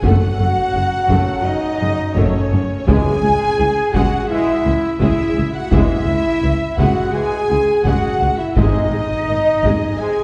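Dramatic and heroic, this excerpt from a longer cinematic orchestral film score moves at a steady 84 BPM in C# minor, passing through F# minor, C# minor and G# chords over about ten seconds. A distant, lush violin section carries the melody in the background, joined on a second line by an airy, very quiet flute ensemble and a focused, bowed violin section. Dark violas supply expressive accompaniment while close cellos and smooth double basses anchor the bass, both stopping at 9.7 seconds. Mellow French horns sit up front with tight sustained chords, backed by roomy trombones and stabs from a dark trumpet section in the background. A taiko ensemble drives the drums from a large room, and timpani struck with hard mallets enter at 2.9 and 8.6 seconds. The whole orchestra is heard from further back on a wet scoring stage, giving the sound a grand, spacious depth.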